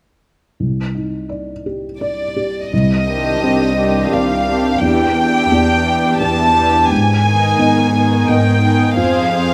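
In a rubato 3/4 at 86 BPM, this cinematic, emotional film score in C minor carries a longing, sorrowful mood. A felt-muted upright piano opens the accompaniment at 0.6 seconds, its thick-felt tone soft, mellow and up front, with audible action noise lending an intimate, vintage character. A chamber violin section takes the melody from 2.0 seconds, bowed sul tasto with light vibrato and a gentle attack, close and warm. Rich, pure cellos enter on the bass at 2.7 seconds. Soon after, a symphonic violin section adds a floating second line while dark, woody violas fill in the accompaniment from the background. The harmony moves from Cmadd9 through Em7 and Abm to Fm, captured in a detailed recording with light reverb.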